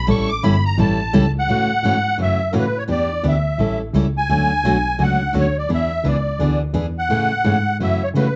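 A swung 4/4 pulse at 171 BPM drives this playful, swinging slice of acoustic string swing in A major, cut from a longer piece. A musette accordion carries the melody from the first second, reedy and shimmering with its wet, dark musette tuning, and takes a solo through the first 1.5 seconds before the harmony shifts into the second section. Beneath it a bowed double bass holds the low end, warm and even with a smooth top and gentle vibrato. A picked steel-string acoustic guitar supplies the accompaniment, bright with fresh strings and an occasional finger squeak. The chords move from A7 through Em7, Dmaj7 and E7 to Amaj7 and F#m7, and all three instruments sit up front in a dark production with a moderate club reverb.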